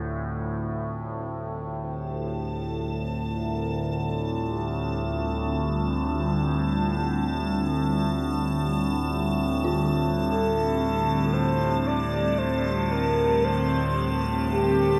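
In free time and D minor, this ominous dark ambient drone opens on a Dm chord with an up-front, overtone-sweeping drone in the low register and an evolving, detuned resonant pad holding sustained chords, both chorused, all set in a vast cathedral reverb. At 1.9 seconds a round, horn-like synth lead fades in with a melody carrying vibrato and tape echo, soon joined by a bright, crystalline glass pad that holds a single high note. From 9.6 seconds an eerie, inharmonic FM bell plays arpeggios in the background through phaser and tape echo, deepening the unsettling mood of this excerpt from a longer piece.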